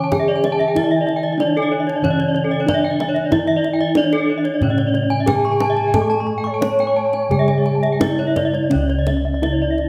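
A bronze metallophone struck with a wooden mallet carries the melody at the front, its paired tuning producing shimmering beats over a ringing tone in this hypnotic, brilliant Balinese gamelan passage, cut from a longer piece. It moves in a straight 4/4 at 84-94 BPM in C# pelog, while a second wooden-mallet metallophone sits airy and low in the background with a lower accompaniment. Two higher metallophones played with horn mallets spin bright arpeggios that add a glittering upper layer. Round, mellow bossed gongs sounded with padded beaters anchor the bass. A distant bamboo bansuri threads a pure, tongued second line with expressive vibrato, and a deep kendang struck with hard hands sounds close and dry. A moderate recital hall reverb surrounds the ensemble, and the music moves into a new section at 8.7 seconds.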